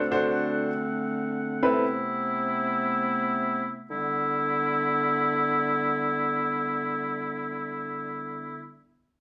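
This pop fragment, cut from a longer piece, feels driving yet bittersweet. A mellow woodwind section sits up front, holding sustained chords with a classical touch, tight and punchy, with vibrato and a smooth top. A grand piano joins at 0.1 s as accompaniment, intimate and natural, with its action noise audible and a slapback echo trailing its notes, before it stops at 1.8 s and the woodwinds carry on alone. The harmony moves from D7 to Amadd9/C, then settles on Em7 at 3.9 s as the music passes into a new section. Captured at a live gig through the venue's PA, the sound carries a light club reverb.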